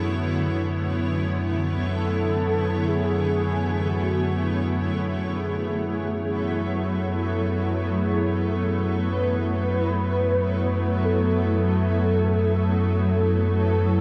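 Desolate and ominous, this slow dark ambient drone in F# minor at 59 BPM sets a deep, detuned rumbling drone under a filter sweep for its first 4.9 seconds, while a blurred, evolving granular cloud pad sits up front with lush chorus and a round, warbling horn-like synth lead carries the melody through ensemble chorus, tape echo and vibrato; a metallic bronze singing bowl rings barely audible until 5.0 seconds, the harmony moves from D6 to F#madd9 at 4.9 seconds, and the whole passage, cut from a longer piece, is soaked in a huge, dreamy reverb.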